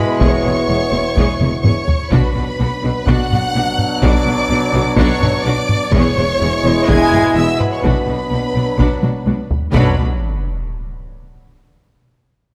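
Lush, vibrato-laden violins in two lines, a mellow French horn section and bright trombones holding sustained chords in the background open this brooding, relentless hybrid orchestral and electronic film score at 126 BPM in B dorian, with rich violas and cellos, smooth, distant double basses and a close, dry taiko ensemble played with heavy sticks entering at 0.2 seconds, harmony moving from E6 to Bmadd9 and back through E6 to Bm, taiko fills punctuating the phrases, a moderate concert hall reverb, and a huge, dark sub drop landing up front at 9.8 seconds as the taiko plays on until 10.7 seconds.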